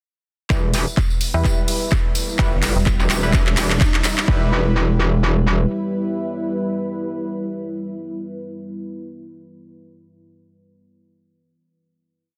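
Swung sixteenths ride on a punchy, tape-warm four-on-the-floor kick, with programmed open hats and claps and a jingly hand-played tambourine in the background, driving this aggressive, gritty bass house piece at 127 BPM in E dorian through a build that starts at 0.5 s and peaks at 4.3 s with a drum fill, a background riser and a filter sweep on the stabs. Up front, a distorted, bright metallic wobble bass shifts its wobble speed, and a mellow, digital FM bass answers it with chopped phrases. Above them, nasal band-passed sawtooth chord stabs with phaser and tape echo and a deep, moody ambient pad, both pumping with the sidechain, carry the final chord out to about 8.8 s under light reverb and a dense, heavily limited master.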